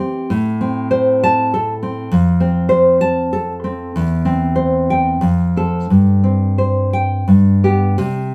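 A full-bodied, thumb-plucked nylon-string guitar sits up front in this nostalgic, romantic solo classical piece, moving in a rubato 3/4 across a range from E2 to A5, with finger squeak audible on the strings. Its deep classical tone carries a progression from Am through F and C/E back to F, settling onto Gsus4 and then G near 7.3 seconds. The short fragment is captured live in a studio room with moderate reverb that lends a gentle sense of space.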